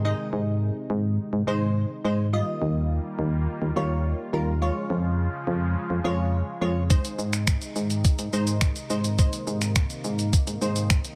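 Dance-pop at 105 BPM in Ab major, this short cut from a longer piece feels summery and carefree, moving through Ab, Ebadd9 and Db before returning to Ab. A wavetable chord stab carries the accompaniment with detuned, triangle-shaped tones that strike quickly and decay, mellowed by a filter sweep and a moving notch. Beneath it, a filtered supersaw swell holds sustained chords, its unison sawtooth voices fading in softly and evolving, while sidechain pumping gives it a breathing motion. A punchy, round FM bass sits up front with a fast attack and decay, pumping with the sidechain as well. At 6.9 seconds a sampler-style 8-bit drum machine enters with a thumpy kick, hi-hat, finger snaps and shaker, its tape-tinged sound re-recorded in a small room and placed close. A digital ambience surrounds the mix.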